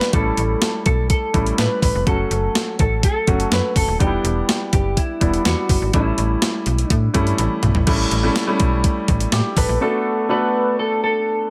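This nostalgic, moody 1980s-style pop fragment moves at 124 BPM in a straight 4/4, with a dark, compressed clean electric guitar carrying the melody through analog chorus over a polished, up-front baby grand piano moving through A7, F#m and Em7. Underneath, an overdriven 12-bit drum machine with a thumpy kick and medium-tuned snare sits close in a small-room sound, while a snappy, metallic FM bass adds fast-attacking, decaying digital notes. A drum fill arrives at 7.4 seconds, and by 9.8 seconds the drums and bass have dropped away, leaving guitar and piano on a Bm7 under light reverb.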